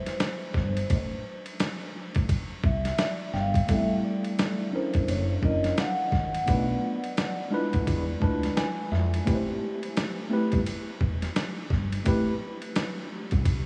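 A soft-mallet vibraphone opens this smoky, cool jazz-hop excerpt in A minor at 86 BPM, its airy, ringing tone carried by a slow motor vibrato and a diffuse ambient delay, while gritty, pitched-down boom bap drums with a thumpy kick and 12-bit sampler crunch sit up front on a 16th-note swing. A round, woody fretless bass with a hollow-body darkness follows at 0.5 seconds, and a worn, slightly out-of-tune tine electric piano joins at 3.0 seconds with fills as the harmony moves through Am7, F#7b13, Bm7b5 and E7b9. The vibraphone drops out at 8.9 seconds, and the whole mix is soaked in a huge, dreamy reverb over a small-room ambience.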